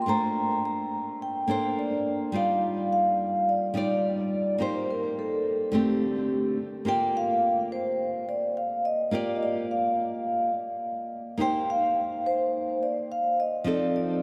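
Relaxed and warm, this chillout passage in G minor moves at 106 BPM in a straight 4/4, taken from a longer piece. A metallic, ringing vibraphone played with medium mallets carries the melody up front, close and full, with a slow motor vibrato. A fingerpicked classical nylon-string guitar accompanies alongside it, and both parts carry a diffuse ambient delay across the full 14.2 seconds. A cathedral reverb soaks the dreamy mix as the harmony drifts from Bbmaj9 and Ebmaj9 into Gm7 at 6.9 seconds, then closes on F7.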